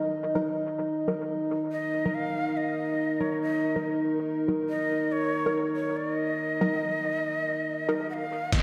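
Cavernous and brooding, this deep dubstep excerpt moves at 141 BPM in a swung half-time feel, resting on a single E-flat minor chord throughout. A dark, nasal analog pad with a slow attack and long release holds sustained chords from the start, thickened by chorus and a sub octave. Muted, detuned dub chord stabs with a fast attack and short decay enter at 0.4 s, colored by phaser, cassette tape grit and dub echo. From 1.7 s a breathy, mellow shakuhachi carries the melody, its bamboo tone showing vibrato, tongued chiff and rolled-off highs, trailed by dub echo. Only at 8.5 s do a thumpy, pitched-down electronic kick and a gritty, tape-warm sampler-style kit with low-passed snare and hi-hat arrive, sitting in a small room. The whole mix is dreamy and soaked in a lush hall reverb.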